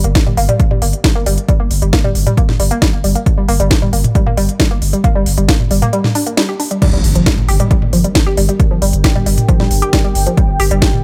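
A dry, close-sounding excerpt of driving peak-time techno in G minor at 135 BPM, industrial and relentless, built on a punchy, tape-warm electronic kick, an overdriven drum kit with cracking snare, smooth hats, crash and toms, and a thick, saturated sub bass pumping under the beat. A woody, wave-folded pluck riff with tube saturation, subtle chorus and tape echo cycles over a G minor chord, while a short break at 5.9 seconds gives way to a drop at 6.8 seconds marked by a background electronic impact. From 7.9 seconds a deep, moody pad with a warbling, vintage sheen and its own reverb enters in the background, sidechained to the kick.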